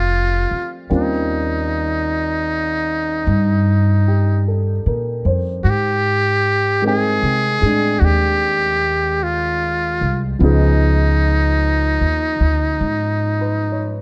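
The recording is dark and close, with little reverb, so the trio sounds intimate and immediate. It is a tender, romantic jazz ballad in a slow, swung 4/4, taken from a longer piece. A trumpet with a metal mute carries the solo melody up front, its tone buzzy, thin and whispered, with soft attacks, a breathy edge and light vibrato. A warm upright piano accompanies with a woody, long-sustaining sound. Also up front, a pizzicato upright bass on steel strings gives a growly low end. All three play throughout the 14 seconds, moving from Bbmaj9 and Eb13 to Abmaj7 at 5.6 seconds and Db9 at 10.4 seconds.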